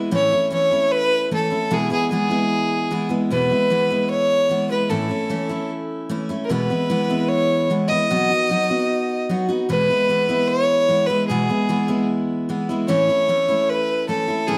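Set in a straight 4/4 at 150 BPM, this easygoing, down-home country excerpt moves along in E major, cut from a longer piece. A picked steel-string acoustic guitar opens at 0.0 s, its bright, full-bodied dreadnought tone sitting up front as it carries the accompaniment across a low-to-middle range. At 0.2 s a single bowed fiddle enters with the melody, close and smooth, its clear voice shaded by a light vibrato and held at an even level. The harmony circles between A and E before reaching B at 8.1 s, then settling back on E and A. A moderate large-studio reverb surrounds both players, and the overall production leans dark, lending the short passage a homey glow.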